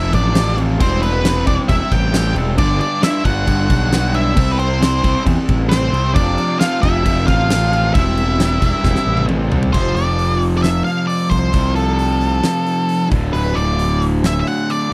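A straight 4/4 beat at 134 BPM drives this sunny, swaggering slice of classic rock, cut from a longer piece, before a drum fill at 8.8 s tips the groove into half time from 9.7 s. A huge arena drum kit with a fat snare, a punchy kick, crashes, hi-hat and toms rings out in a big room, while an up-front fuzz bass, picked and overdriven, sits low and loud beneath it. A cranked stack guitar, double-tracked and bright with overdrive, churns out the riff across the whole stretch. Above it, a dark octave-fuzz lead guitar carries the melody through a slapback echo, joined in the background by a second octave-fuzz guitar line that drops away at 9.2 s. The chords move from F through C/E and G to C5 and back, settling on F and then D5 in the half-time passage, all captured in a dry, close 1970s-style studio sound.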